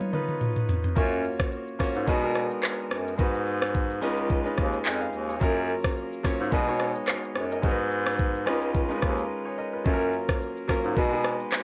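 A clear, vintage-toned bass clarinet carries the low line up front in a classical style, entering at 1.0 seconds beneath this joyful, sunny afrobeats excerpt cut from a longer piece. An electronic, produced afro-pop kit opens with a drum fill before the bass arrives, then settles into a lightly swung 16th-note feel built from a knocking kick, metallic hi-hats, rim clicks, shaker, handclaps and toms, with a large-room character to its sound. A concert grand piano supplies the accompaniment with an intimate, polished presence, deep bass and long sustain, its action noise audible and its tone coloured by cassette tape. The harmony cycles through rich extended chords such as F#maj7, B6, G#m7 and C#9, and a brief break around 9.3 seconds interrupts the groove. The mix is dry and close, with a home-recorded, lo-fi intimacy.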